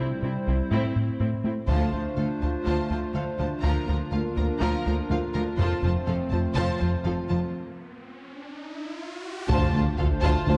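A rubbery, wave-folded square bass riff drives this vast, brooding excerpt of hybrid orchestral and electronic film score over a hollow, flute-like pad with chorus, lush violas, and cellos in the background, joined at 1.7 s by an intense violin second line and woody double basses, before an electronic riser and sub drop usher in, at 9.5 s, a focused violin melody, dark French horns, a distant tuba and very quiet taiko on a moderate scoring-stage reverb.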